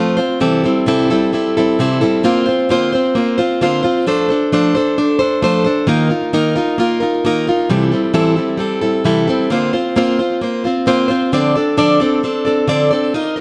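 Warm and hopeful, this short rock passage, cut from a longer piece, is carried entirely by a picked, plugged-in steel-string acoustic guitar playing solo from 0.0 to 13.4 seconds. The guitar sits up front with a concert-ready acoustic tone, and small finger squeaks come through to add a human, close-up touch. Its part spans from C3 up to Eb5 over a straight 4/4 feel. The harmony moves through bright, open chords, beginning on C6 and passing through Bbadd9/D, F6 and Ebsus2 before circling back to C6 at 7.7 seconds. A light reverb gives the sound a touch of space while keeping it intimate and clear.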